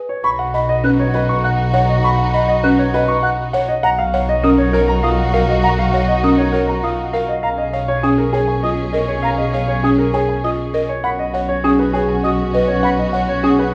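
Minimalist classical pattern music in B lydian at 100 BPM in 3/4, this hypnotic, bright piece sets a clear, up-front grand piano melody over woody, buzzing marimba arpeggios and pure, straight-toned flute arpeggios in the background, while a smooth, distant bowed string section holds sustained chords and a dark, lush double bass section plays a low B pedal beneath chords that shift over B, all placed in a recital hall reverb.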